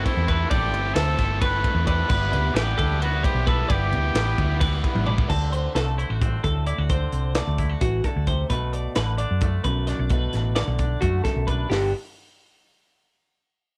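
Math rock and midwest emo in 7/8 at a brisk 263 BPM in G major, this playful, intricate fragment of a dry cassette home recording opens with a clear, lightly vibrato trumpet melody with scooped notes, a double-tracked biting overdriven guitar riff, and a bright, compressed twelve-string electric guitar weaving arpeggios, all over a dark, round, up-front hollow-body bass and a crisp fusion kit with a high-tuned snare, punchy kick and pumping small-room sound; the trumpet drops out at 4.8 seconds, and after a drum fill at 5.0 seconds the riff guitar gives way at 5.3 seconds to a clean, fingered twangy electric guitar accompaniment as the chords move from Em7/G through D7 and Bm7 to Gmaj7.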